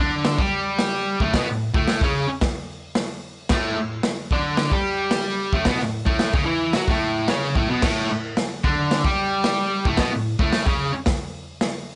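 Rowdy and swaggering, this straight 4/4 garage rock excerpt at 111 BPM in A mixolydian sets a bright, overdriven, double-tracked electric guitar riff from A2 to G4 up front against a gritty, boomy raw drum kit of kick, medium-tuned snare, hi-hat and crash with a pumping room sound and rolled-off top, all in a small room reverb, the guitar stopping at 11.0 seconds and the drums at 11.7 seconds.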